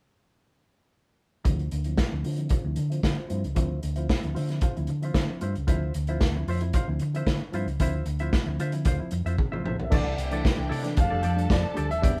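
Disco excerpt at 113 BPM in D minor with a driving, danceable feel, where an up-front vintage kit with dark cymbals and a tight kick and a round, dark hollow-body bass anchor a clean semi-hollow guitar and a barky, lightly overdriven reed electric piano under a filter sweep over Dm9 until a drum fill at 9.4 seconds, after which a clear grand piano melody with audible action noise enters alongside a lush, distant violin line and floating sustained strings over C69 and F69, all in light reverb like a band playing live in one room.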